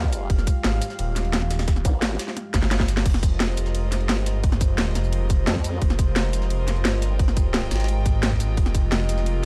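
Dark technical drum and bass at 174 BPM in F minor, this futuristic, dark drop from a longer piece drives on an overdriven, tight electronic kick and an up-front kit of cracking snare, bright hats, shaker and crash, with a very quiet, pitched-up jungle sampler-style kit of gritty snare and ride beneath; a swirling, thick phased detuned saw bass holds the low end while a saturated formant-sweep wobble bass wobbles through the opening 2.2 seconds and returns briefly, a moody analog pad with 12-bit sampler grit and sidechain pumping sustains an Fmadd9 chord, and after a drum fill at 2.5 s an earthy, close chamber string section enters at 3.1 s.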